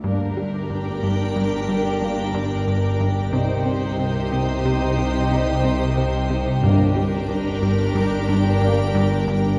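Opening at once on soft, sul tasto violin sections, one carrying a floating melody and a second, intimate line beneath it, over pure-toned cellos, distant double basses, a tense string-like drone and a punchy, funky filter-plucked analog bass riff, this mysterious and ominous suspense film-score excerpt in G minor moves at 91 BPM in a straight 5/4 over Gm, Cm and back to Gm, with woody violas, roomy background French horns and, from 0.8 seconds, an icy, crystalline glass pad with chorus, until round, very quiet timpani strokes arrive at 6.6 seconds, all set in a wet recital-hall reverb.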